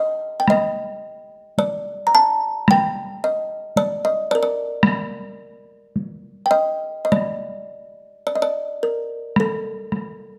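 Uneven, rubato beats in 2/4 at about 54 BPM carry this austere, calm fragment of Japanese traditional chamber music in D miyako bushi, where a bright, woody kalimba melody with short, thumbnail-plucked notes sits up front between A4 and Bb5 while taiko drums struck with hard sticks join at 0.5 seconds with a live-room ring, all captured by close, detailed microphones with light reverb.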